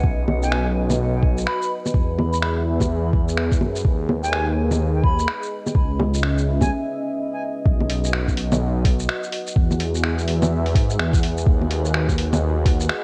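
A menacing, saturated detuned saw bass pumps up front beneath a thumpy, overdriven electronic kick and a muffled, pitched-down lo-fi kit of bongos, finger snaps, hi-hat and shaker with gated reverb, swung on the 16ths in this melancholic, wistful future garage piece, while a dark, chorused analog pad holds sustained chords, an airy wooden flute carries the melody with delay until 6.7 s, and a reversed, dreamy texture drifts in at 9.4 s, the mix sitting in a cassette-tinged, 1980s-style digital sheen.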